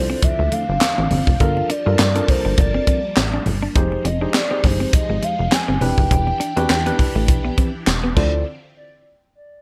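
With light reverb across the mix, this slick, danceable early-eighties boogie funk excerpt moves at 102 BPM in 4/4, its sixteenths lightly swung over a Dm9, Gm9, Fm9, Em9 progression. A dry, upfront funk kit with a high-tuned snare, handclaps, hi-hat and crash under gated reverb drives alongside a punchy, plucky analog bass with a fast, decaying filter attack, while a worn, slightly out-of-tune tine electric piano and a compressed, fingered clean guitar riff fill the middle. A hollow, woody synth lead with chorus and vibrato carries the melody over a swirling, phased string machine in the background and very quiet, thick-skinned congas, and everything drops out at 8.5 seconds.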